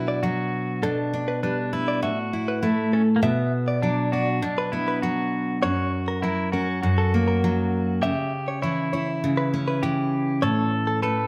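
A full-bodied, up-front dreadnought acoustic guitar carries this wistful, reflective pop excerpt, its picked accompaniment spanning from low to mid range at a steady 100 BPM in 4/4 with a straight feel in B minor. Above it, a bright, clean electric guitar recorded direct plays compressed, picked arpeggios in a higher register from 0.1 seconds, bathed in spring reverb. A pedal steel guitar adds a warm second line, played with fingerpicks and slide, compressed and shaped by volume swells, sitting lower in the mix than the acoustic. The harmony moves from Bm through G/B and A5, then a longer passage beginning at 3.2 seconds travels from Bm to F#, C#dim and finally A. A moderate small-room ambience gives the trio a close, intimate sound.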